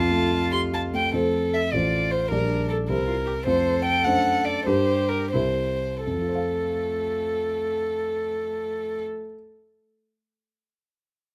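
Lively and graceful, this brief excerpt from a quick classical-period movement for piano trio moves in a lilting 6/8 at around 80-106 dotted-quarter beats per minute in F major, with a flexible, rubato feel that broadens as it slows from 2.9 to 6.1 seconds. The violin carries the melody up front, its tone rich and airy, with light vibrato, a soft attack and a sul tasto touch that keeps it intimate. Beneath it the cello sings a second line, pure and floating, its bowing also soft and sul tasto. The concert grand piano supplies the accompaniment, dark and mellow with a deep bass, smooth, vintage colouring and short sustain, sitting prominently alongside the violin. The harmony passes from F through a turn toward G minor, C7 and D7 before settling back on F at 6.1 seconds. Close, detailed miking with little reverb places the listener near the players.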